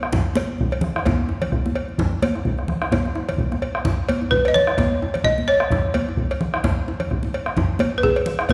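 Bathed in the long, wet reverb of a large hall, this short cut from a longer West African traditional drum ensemble piece drives powerfully at 129 BPM in a swung 4/4, with a deep, dark, up-front bombo, thick-skinned, high-tuned congas struck with hard hands, a medium-tuned, band-limited djembe and a close, metallic cowbell, joined at 4.3 seconds by a woody, buzzing balafon played up front with hard rubber mallets, carrying the melody between G#4 and D#5.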